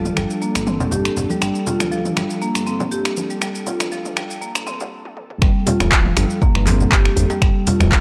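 Afro house at 120 BPM with a warm, driving feel, this 8-second excerpt cut from a longer piece opens on an ethereal, airy pad holding sustained chords in the background, close-miked marimba arpeggios with analog delay, and a deep, rumbling detuned saw bass, all pumping against the sidechain. An up-front, overdriven deep house kit of finger snaps, handclaps, metallic hi-hats, shaker and toms joins with ringing, softly played congas through a filter-swept build-up that stops briefly and breaks into a drum fill. At 5.4 seconds the drop lands on a layered, overdriven electronic kick, joined at 5.7 seconds by a tight, cracking djembe rattling in the background, all carrying a gritty cassette-tape grain and light digital ambience.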